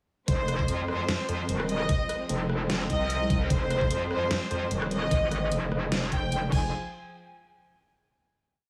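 A metallic, saturated FM wobble bass sits up front in this short, menacing heavy wobble dubstep piece at 149 BPM in F minor, playing modulated phrases with changing wobble speed between Eb1 and F2, thickened with chorus and overdrive. Over a single F minor chord, the drop runs from 0.3 to 6.7 seconds, driven by a knocking, overdriven electronic kick and a layered dubstep kit of deep snare, rim click, closed hi-hat and crash in a half-time beat with a light swing on the sixteenths. A symphonic violin section, smooth and lightly vibrato-tinged, repeats a riff melody between C5 and Ab5, trailed by tape echo. Beneath it, a dark, lush studio string section holds sustained chords in the background with expressive vibrato and sidechain pumping. The drums have a re-recorded small-room character, and light digital reverb surrounds the mix before a final hit from 6.7 to 8.3 seconds closes the chaotic piece.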